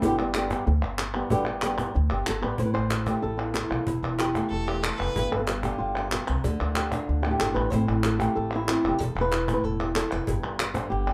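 Passionate and mournful, this flamenco excerpt sets a dark, boxy thumb-plucked guitar melody up front over woody pizzicato upright bass, snappy compressed cajon and crisp palmas hand claps, while a focused bowed violin with vibrato adds a brief second line from 4.5 to 5.2 seconds, all within a small room as the chords cycle through Am, Esus4, G and Dm.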